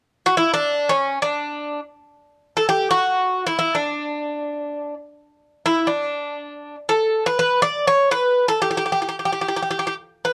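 Worn, warbling old cassette tape lends this short cut from a longer Greek folk piece a drifting, unsteady pitch, with light reverb around a lone bouzouki placed up front. Played in free time in D major, the picked, metallic double strings, some doubled at the octave, ring out brightly between C#4 and D5 from 0.3 to 10.3 seconds, moving into a new section at 6.9 seconds. The mood is uplifting and energetic.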